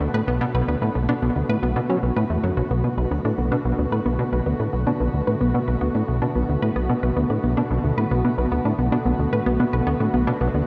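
Mysterious and hypnotic, this ambient, sequencer-driven space music excerpt moves at 111 BPM in B minor over a single Bm7 chord, with a punchy, funky analog bass riff up front, lush detuned unison-pluck arpeggios trailed by analog delay and shimmer reverb, and an airy, evolving resonant pad holding sustained chords with chorus, all set in a dark plate-reverb space.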